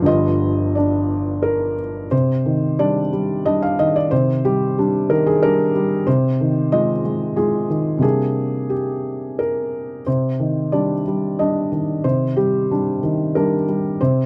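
A felt-muted upright piano plays alone from the first second, a reflective, melancholic piece of neoclassical minimalist piano in C minor, moving in 3/4 at around 90 BPM with uneven, rubato beats. Its soft, mellow, intimate tone sits up front, reaching from deep bass to the upper middle register, and the harmony settles onto a C minor chord with an added ninth at 2.1 seconds before drifting through related minor colours and returning to it at 10.1 seconds. The close, dry studio sound has a vintage 1970s character, and this cut from a longer piece runs to 14.3 seconds.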